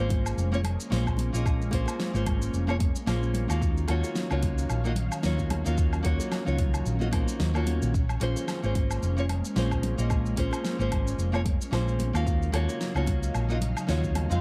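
A fingerpicked nylon-string guitar with audible finger squeak and a round, up-front hollow-body bass open this smooth, wistful sunset chillout excerpt in Bb minor, moving at 111 BPM with a swung sixteenth feel over Bbm9 and Ebm9 chords. A deep, layered electronic kick, a produced R&B kit of fat snare, hats, shaker and woodblock, and very quiet congas and bongos join at 0.1 seconds, while an ethereal, warbling, detuned pad with ensemble chorus sustains in the background. The guitar carries a delay, and the whole mix sits in a dark production with light digital ambience.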